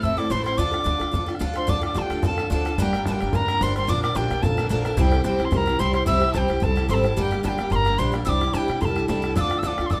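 A small, moderately reverberant room frames this wild, driving Celtic reel fragment in D minor at 219 BPM with a light swing, where a mellow, tongued tin whistle with vibrato and chiff carries the melody over a hollow, airy wooden flute with a crisp attack on the second line, while an up-front, bright, shimmering octave-doubled twelve-string guitar picks the chords through Dm, Gm, Bb and C, a thumpy, woody pizzicato upright bass holds the low end, and a damped, tight bodhran sits distant in the mix.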